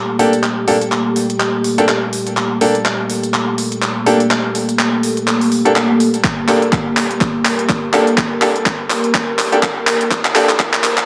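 A dark, detuned analog pad opens this gritty, bouncy bass house build-up, holding a Gm(add9) chord with chorus, sidechain pumping and a filter sweep. A bright grand piano plays short, brilliant stabs with delay, while an up-front garage kit of crisp hats and handclaps rolls through a swung drum fill, all set in a roomy digital reverb. A punchy, tape-warm electronic kick joins at 6.2 seconds, and a very quiet riser creeps in at 8.9 seconds as the passage keeps climbing.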